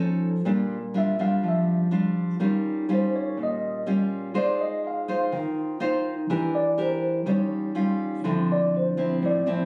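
A fingerpicked nylon-string guitar opens this sunny, relaxed bossa nova fragment at 123 BPM with deep, classical-toned accompaniment placed up front, joined at 1.0 seconds by a mellow, clean tine electric piano heard through built-in speakers carrying the melody over chords moving from Bb6 through Eb9 and Em7b5 to Dm9, all caught on a phone in the room with moderate studio reverb, club ambience and compression.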